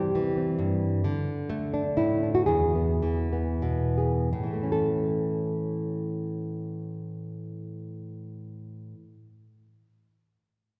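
A wet concert hall reverb with a 1.9-second decay surrounds this gentle, peaceful folk excerpt in 3/4 and A major, where a solo nylon-string guitar, dark, full-bodied and thumb-plucked, sits up front across a range from E2 to A4 at 80-134 BPM, slowing down from 1.1 to 4.3 seconds as the chords move from C through D5 and E to A.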